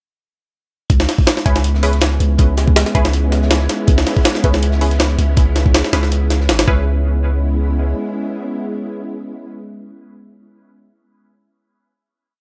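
A dark, atmospheric drum and bass and jungle piece where an up-front, heavily chopped, gritty sampler-style breakbeat with a thumpy kick and high-tuned snare drives the drop alongside a very quiet, saturated looped break and long gliding deep sine 808-style bass notes, while a silky vintage string machine pad with ensemble chorus and sparse, muted, detuned chord stabs with phaser and dub echo carry on through the final hit, the stabs echoing out around 11.2 seconds.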